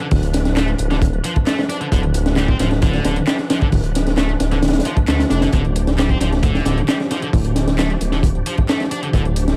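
A small room wraps this raw, swaggering breakbeat cut, taken from a longer piece, with the crunchy acoustic breakbeat kit and the dark detuned saw bass sitting up front. Running at 133 BPM in a straight 4/4 and resting on a D minor chord in D dorian, it holds a single section for its full 9.6 seconds, tuned to A4 = 436 Hz. The breakbeat kit enters at 0.1 seconds with a tight kick, a high-tuned snare and hi-hat, its saturated, gritty tone rolled off at the top. Beneath it, the rumbling, beating saw bass growls through its unison detune and sustains between D1 and D2. A high-gain electric guitar plays a picked, distorted riff from D3 to D4, thickened with overdrive and tape echo until it stops at 9.2 seconds. Further back, a tape-warm analog drum machine adds handclaps and hi-hat, while a reedy, clean tonewheel organ holds sustained chords with key click, chorus vibrato, a fast rotary speaker and sidechain pumping.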